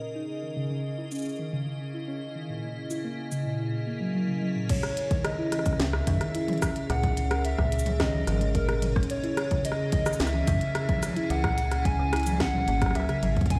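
IDM at 109 BPM in C# dorian, cerebral and melancholic, cut from a longer piece. An icy, crystalline glass pad holds sustained chords with chorus, built-in reverb, sampler grit and sidechain pumping, while a harp-like synth pluck rings out arpeggios through chorus and tape echo, a filter sweep on it through the opening 4.7 seconds. A glitchy drum kit enters at 1.1 seconds with a tiny snare, clicky hats, rim clicks, cabasa, toms and crash in small room ambience. At 4.7 seconds a warbling, nostalgic lead takes the melody with vibrato, chorus and tape echo, joined by a deep electronic kick, and at 5.8 seconds a metallic, mellow FM bass arrives. The chords circle C#madd9, F#7 and G#sus2/C#, and the whole mix sits in stone room reverb, as if played on a big sound system in a bare room.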